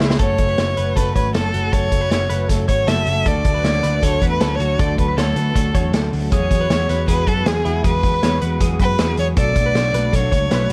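Restless and wistful, this jangly indie pop excerpt in F# minor moves at a straight 157 BPM in 4/4, opening with a drum fill on a punchy vintage kit in a pumping small room before an expressive, boxy solo violin takes the melody at 0.2 seconds with vibrato and portamento. It is carried over F#m, D, Eadd9 and Bm7 by a dark, round, foam-muted picked bass, clean chorused guitar arpeggios, a slightly broken-up lo-fi guitar tucked in the background and a very quiet, phased string-machine cello pad of slow-swelling sawtooth chords, all under light reverb and a layer of vinyl crackle.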